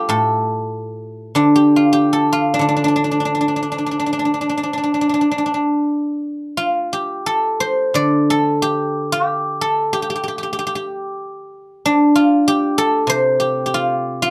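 Longing and contemplative, this Chinese traditional piece for solo guzheng moves with a free, rubato feel, its phrasing unfolding at an unhurried pace. The guzheng, played with fingerpicks, rings out bright and silvery across a span from A2 to D5, placed up front under close, detailed microphones with a light touch of reverb. A new section opens at 6.6 seconds and carries on to 14.3 seconds, where this portion of a longer piece breaks off.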